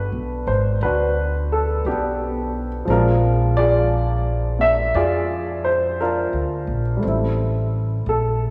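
A slow, romantic late-night jazz ballad at 58 BPM with a lilting swing, this brief cut from a longer piece pairs an intimate baby grand piano, its short sustain and audible action noise close up front, with a woody pizzicato upright bass on steel strings, both playing throughout and drifting through Gmaj7, Bb9 and Am7 inside a lush 2.7-second hall reverb that soaks the mix in a dreamy haze.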